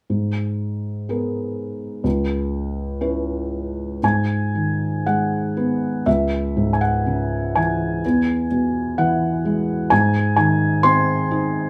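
Heard through a wet studio reverb from further back in the room, this reflective, melancholic fragment of a longer classical piece features a solo felt-muted upright piano, intimate and dark with thick felt and audible action noise, played with rubato in 4/4 at around 57-65 BPM in G# minor, moving from G#madd9 and C#m7 into a new section at 4.0 seconds that passes through C#m and E before settling on a G# major chord near 9.9 seconds.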